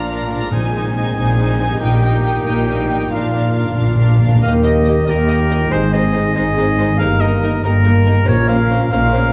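A short cinematic passage, cut from a longer piece, opens with the full orchestra sounding together: violins carry a soaring melody in a focused, lush tone, with a bright oboe, a distant clarinet and a second, very quiet violin line woven beneath. The music moves in a straight 6/8 at 93 BPM counted in dotted quarters, centred on Bb mixolydian before shifting to Eb mixolydian at 4.4 s, and the mood is triumphant throughout. Mellow French horns and a tight, very quiet trombone section hold sustained chords, while a clear trumpet adds stabs and an intense viola section fills the accompaniment in the background. Underneath, bowed double basses and cellos anchor the bass, and a ringing, thumb-plucked concert harp plays quiet arpeggios. Very quiet timpani with calf heads enter at 0.5 s and play a fill that leads to the change at 4.4 s, returning briefly near the close as the harmony settles on Bbmadd9, all within a reverberant recital hall.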